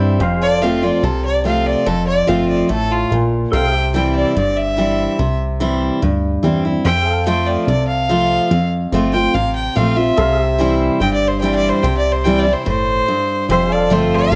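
Sunny and easygoing, this country excerpt moves at 144 BPM in F major, with a clear, earthy fiddle up front carrying the melody in a solo from 0.2 s, lightly touched with vibrato and plate reverb. A bright, picked steel-string acoustic guitar with audible finger squeak plays the accompaniment alongside a punchy, funky analog bass with a dark filter pluck, while a twangy pedal steel guitar sits in the background with sustained chords and volume swells. The harmony alternates between F and C, and the whole band sounds as if it were in a large studio room with moderate reverb.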